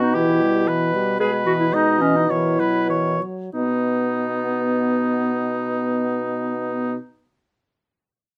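Quick classical-period wind quintet music in 2/4, urgent and restless, where an airy, distant flute carries a barely audible melody above an up-front oboe second line with light vibrato, while a soft-attacked clarinet and a close-miked, mellow horn supply accompaniment and an up-front bassoon holds a smooth-topped bass on B, the pace slowing from 0.7 to 3.5 seconds in a moderate studio reverb.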